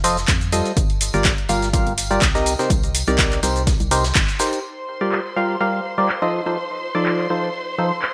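Piano house with a soulful, bittersweet mood, cut from a longer piece and riding a lightly swung sixteenth-note groove. A hollow, wave-folded organ stab carries the riff up front throughout, treated with chorus, phaser, delay and sidechain pumping, while a dark, organ-like FM bass with a fast, decaying attack pumps beneath it until about 4.3 seconds. The rhythm rests on a punchy, tape-colored analog drum machine playing cabasa, handclaps and filtered hi-hats. It is joined by an electronic kick, a very quiet acoustic studio kit of hi-hat and snare, and a distant tambourine in the background, and the kit and tambourine drop away after the first half. A band accent lands at 4.2 seconds, and at 4.6 seconds a lush studio violin section enters with smooth, bowed sustained chords, vibrato, portamento and sidechain pumping. The harmony moves through minor seventh and dominant seventh chords, and a moderate studio room reverb gives the mix a compact sense of space.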